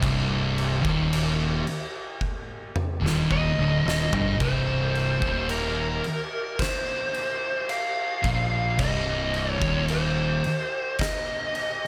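Sludgy and ominous, this cut from a longer stoner and doom metal piece crawls at 55 BPM in C minor, with two dark, picked fuzz guitars grinding a low riff in the background over a growly, punchy overdriven bass that carries on until 10.4 seconds. An oversized, low-tuned acoustic drum kit sits up front in a bright, pumping stone room, its boomy kick, fat snare, toms and dark crash cymbals saturated and gritty, with a fill from 2.2 to 4.4 seconds. At 3.3 seconds a compressed fuzz lead guitar enters up front with a distorted, delayed melody, and light reverb surrounds the mix.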